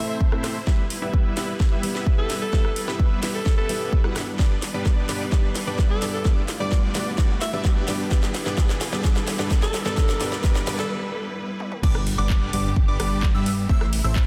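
A dense, heavily limited mix in a concert-hall reverb carries this euphoric, anthemic festival progressive house excerpt at 129 BPM, where a breathy, scooped alto saxophone sings a jazz-style melody with tape echo over a dark, boxy grand piano, a huge detuned supersaw riff with 12-bit grit and sidechain pumping, faint bowed strings, a very quiet riser and impact, a punchy up-front kick and a house kit with cracking snare and metallic hats, before a brief break gives way at 11.8 s to a drop where a catchy square-wave plucky lead and a fat analog bass join.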